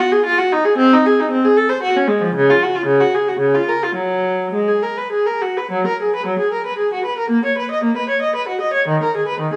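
A lone bowed viola opens this introspective, flowing baroque-style suite movement in 3/4, its reedy gut-string tone touched with light vibrato and heard up front, though with a distant quality, through a moderate recital hall reverb and dark production, with the playing taking a rubato feel and shifting to a new section at 5.7 seconds before the fragment ends at 9.6 seconds.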